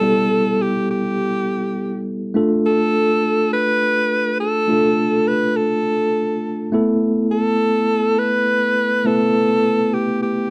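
Urgent and dramatic, this short pop passage cut from a longer piece moves at 103 BPM in a straight 4/4, set in D dorian with slightly sharp tuning at A4 = 441 Hz. A bright alto saxophone carries the solo melody up front, singing between G4 and B4 with pop-style vibrato and a slapback echo. Beside it, a clean tine electric piano heard through its built-in speakers plays accompaniment over Em, Dm and Asus2 for the full 10.5 seconds, all captured in a dry, close 1970s-style studio sound with light reverb.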